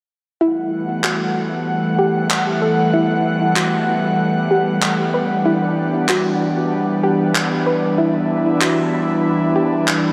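A straight 95 BPM pulse in 4/4 carries this blissful sunset chillout excerpt in G major, where an airy, breathy, detuned pad holds chorused chords up front with vintage 12-bit grit, a soft, round, dark pluck spins arpeggios through chorus and delay, and overdriven, layered electronic handclaps enter at 1.0 s, all soaked in a dreamy plate reverb as the harmony moves from Gmaj13 to Em9 at 5.1 s.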